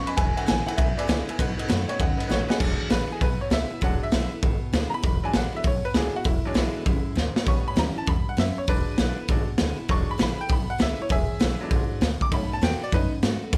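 Swung eighths drive this upbeat, rowdy rockabilly fragment in 4/4, anchored by a thumpy, woody pizzicato upright bass and a saturated, gritty garage drum kit with a boomy kick and pumping small-room sound, sitting up front. A dark, boxy upright piano carries the melody until 2.6 s, when a drum fill hands off to a honky-tonk piano solo over E7, A7 and B7. Meanwhile a metallic, jangly tack piano with plate reverb rings out and a bright picked dreadnought guitar, complete with finger squeak, plays in the background.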